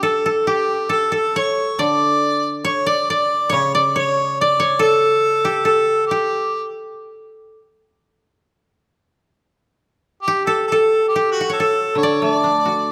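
The beat moves unevenly and freely in 4/4, a rubato pulse around 71 BPM that gives this fragment of Japanese chamber music an austere, calm mood. In D with a Ryukyu scale flavor, a koto carries the melody between D4 and D5, its fingerpicked strings sounding dry, woody and up front. A harmonica traces a second line from F#4 to D5 with light vibrato and a punchy, pop-style tone that feels distant and roomy yet still sits forward. A lower koto supplies accompaniment from C#3 to F#4 at a softer level, dropping out at 6.1 seconds and returning at 12.0 seconds. A moderate scoring-stage reverb gives the ensemble a gentle sense of space, and the recording is cut from a longer piece.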